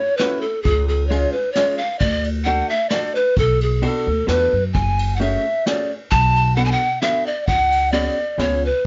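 A breathy, mellow wooden pan flute carries the tongued, slightly unsteady melody up front in this bittersweet, nostalgic musette waltz at 132 BPM in F# minor, over a dark, clean hollow-body archtop guitar, a woody, growly pizzicato upright bass and a soft brushed drum kit with a punchy kick, the whole mix wrapped in light reverb and the warbling pitch drift of worn old cassette tape with a dulled top end.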